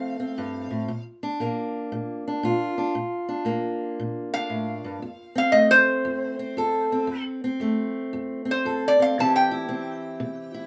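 A soulful, gritty acoustic country blues in F major opens with a metal-body resonator guitar, played with a steel bar and fingerpicks, and a fingerpicked parlour steel-string guitar sounding together at 116 BPM with swung eighths. The resonator's nasal, metallic slide melody drops out after 1.0 seconds and returns at 4.3 seconds, while the boxy acoustic guitar keeps up its accompaniment through the F, Bb and C changes. Both guitars sit up front in a small room with moderate reverb, and this brief excerpt is cut from a longer piece.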